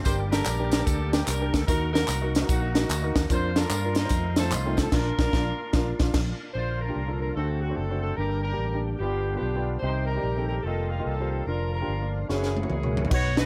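A crisp fusion drum kit with a high-tuned snare and punchy kick sits up front in this reverent, hopeful uptempo gospel excerpt, dropping out at 6.3 seconds and returning at 12.3 seconds for a closing fill, while a dark, round fingered electric bass drives underneath. A distant, roomy horn section with light vibrato carries the melody over a natural-sounding baby grand piano and a thick, gritty overdriven tonewheel organ held in the background through slow rotary speaker and chorus vibrato, with tambourine and group handclaps adding lift early on. From 6.5 seconds a clear alto saxophone with vibrato joins the melody in a small room, as the swung groove moves through gospel changes to a closing Gb7.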